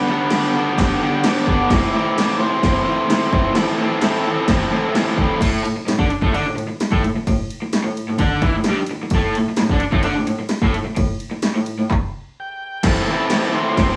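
Garage rock in A minor at 129 BPM, raw and swaggering, where a bright, double-tracked overdriven guitar riff drives from 0.0 s over a punchy, tape-warm analog drum machine of kick, snare, handclaps, ride and crash, while a buzzy vintage combo organ with light vibrato carries the melody until 5.1 s and returns at 12.4 s during a stop, all in a live-room studio ambience.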